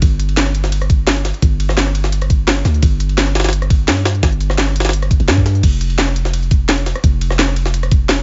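A dry recording with a rolled-off top end carries this short cut of dreamy, lush liquid drum and bass at 171 BPM in a straight 4/4. A knocking electronic kick sits up front beside a deep, mellow 808-style sine bass that strikes with a fast attack and decays long between F1 and G2, while a layered drum and bass kit, re-recorded in a small room, adds a cracking snare, crisp hi-hats, rim clicks and crash cymbals. Beneath them, a gritty, compressed jungle sampler-style kit contributes a pitched-up, high-tuned snare and a ride cymbal, both thinned by a high-pass filter.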